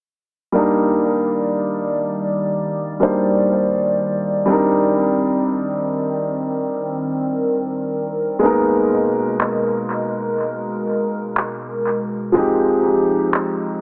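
A boxy, up-front baby grand piano opens this smooth, tender contemporary R&B excerpt, its accompaniment carrying tape echo. A hollow, flute-like pad joins almost at once with airy, slow-attack sustained chords thickened by chorus. The tempo is a slow 61 BPM in 4/4 with a light swing on the sixteenths, in Eb major, and the harmony moves from Ebmaj7 to Abmadd9 at 8.4 s and then to Fm9 at 12.4 s. A filter sweep runs through the whole passage, and the echo-heavy mix is low-passed into an AM radio tone inside a moderate spring reverb. At 9.4 s an analog drum machine enters low in the mix, its booming, deep kick and handclaps given a tape echo of their own.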